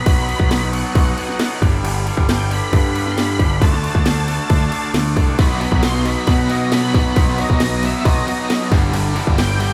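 A straight 4/4 beat at 135 BPM drives this swaggering, brooding classic rock excerpt, with a punchy, cracking, up-front house drum kit and a growling picked bass anchoring a B, G6 and D progression. A crunchy guitar riff churns beneath a thick, gritty overdriven organ melody turning through a slow rotary speaker and chorus vibrato, while a very quiet, shouting second organ holds sustained chords with audible key click. At 5.4 seconds a biting guitar with tremolo joins the riff in the background, and the band sits in a moderate large studio reverb, as if playing live in one room.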